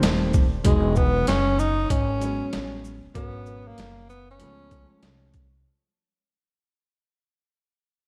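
Vinyl crackle, light reverb and small-room ambience frame this cool, smoky jazz-hop clip, cut from a longer piece and fading out across its 5.6 seconds. A compressed, gritty boom bap drum kit with a thumpy kick, medium-tuned snare, hi-hat and shaker sits up front with a swung sixteenth feel, while a woody pizzicato upright bass and a vintage concert grand piano with deep lows carry the harmony through a rootless F9, then Emaj9, G#m11 and C#7b13. Over them a mellow tenor saxophone solo, also up front, uses breathy subtone, vibrato and scooped notes, with a slapback echo.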